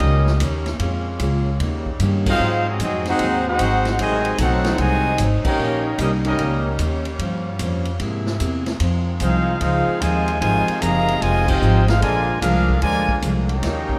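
A clear, up-front trumpet section carries the melody over a dark, distant trombone line, bright sustained saxophone chords in the background, a picked steel-string acoustic guitar, woody pizzicato upright bass and a roomy big-band drum kit with a punchy kick, launching this energetic Eb major big band swing excerpt at 150 BPM, with band accents at 2.2 and 5.4 seconds before the brass drops out from 6.8 to 9.2 seconds and returns over light reverb.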